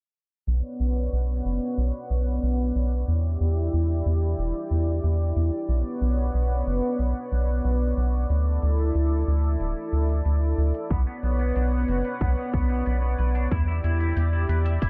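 A straight 4/4 synthwave groove at 92 BPM in B minor sets a nocturnal, cinematic mood, with a faint metallic hi-hat ticking from 0.5 s under a round, nasal analog bass that carries tube saturation and a filter sweep, and a shimmering, detuned pulse-width pad pumping with sidechain on sustained chords such as Bmadd9, Em7 and Dsus2. At 10.9 s a punchy, overdriven electronic kick arrives up front alongside a clean, twangy electric guitar riff touched with subtle chorus and delay. The production is dark and low-passed, with light digital reverb and some lossy compression artefacts in this fragment of a longer piece.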